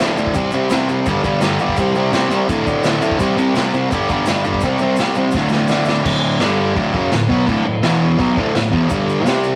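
A bright, double-tracked fuzz guitar sits up front, driving a raw, swaggering garage rock riff through this short section cut from a longer piece. Underneath, a gritty, saturated acoustic drum kit with dark cymbals, a tight kick and a medium-tuned snare pushes a straight beat, with a drum fill from 5.3 to 6.1 seconds leading into the second section. A grainy tube shaker rattles in the background, and the whole thing has the rough, saturated feel of a rehearsal-room recording in a small booth.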